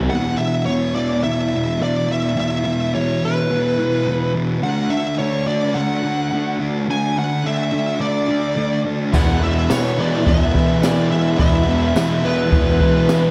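A thick, dark fuzz guitar opens this hazy, dreamy shoegaze and dream pop excerpt, its distorted riff up front with a subtle chorus shimmer, while a smooth, overdriven lead guitar enters at 0.1 seconds with a dark, tape-echoed melody riding high above it. The tempo sits at 106 BPM in a straight 4/4, with the harmony moving from E5 to D and then to E7. At 9.1 seconds the arrangement fills out: an overdriven semi-hollow guitar with reverse reverb and a punchy, fuzzed fingered bass return in the background after a brief appearance at the very start, joined by a bright, double-tracked distorted guitar beneath the two leads. A jazz drum kit played with brushes arrives at the same moment, with a boomy kick, a high-tuned snare, hi-hat and crash cymbal, and a jingly tambourine follows quietly at 9.7 seconds. The whole mix is soaked in a lush plate reverb, giving the layered guitars a blurred, floating haze before the cut ends.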